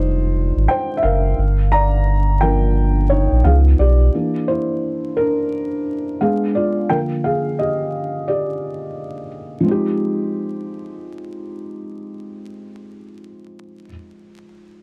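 Nostalgic and hazy, this lo-fi hip hop passage taken from a longer piece moves at 87 BPM in 4/4 with a swung sixteenth feel in F dorian. A soft, thick-felt upright piano sits up front through cassette-tape colouring and a low-pass filter, voicing mellow, intimate chords from Fm9 through Db9 and Ebmaj7. A round, sine-like sub bass sounds beneath it only until 4.1 seconds, all within a dark production dusted with vinyl crackle and light reverb.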